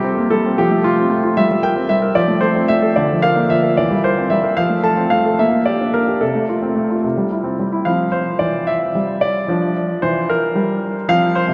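A solo concert grand piano opens this elegant, cheerful classical-period sonatina, cut from a longer piece, in F major and a straight 6/8 at 74 beats per minute counted in dotted quarters. The piano sits up front with a polished, clear tone, deep bass at the bottom of its range from C3 to A5, and notes of short sustain. Around it, a vast cathedral reverb with a long 5.8-second decay fills the echoing space. The opening phrase moves through a graceful cadence-driven progression, from F through Bb, C7 and Gm before settling on C at 7.0 seconds. A new passage begins at 7.9 seconds, reaching Bb before the clip ends at 11.5 seconds.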